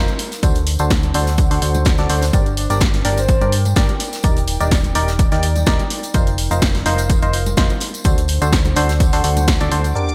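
Bittersweet and soulful, this piano house excerpt rides a swung 4/4 groove built on an overdriven, up-front electronic kick, a punchy analog drum machine with gated reverb, a dry, very quiet 70s kit, and bright tambourine and congas in the background. A barking FM electric piano riff with chorus, delay and a low-pass filter pumps over a round, dark FM bass and a warbling, lo-fi tape-like pad, while a breathy flute-like synth lead drifts in from 2.6 to 4.8 seconds through chords moving from D7 to Gm, Ebmaj7 and F7sus4. At 10.0 seconds a sub drop hits as a clear studio violin section sounds a brief high note, all within a bright 1980s-style digital production with light room reverb.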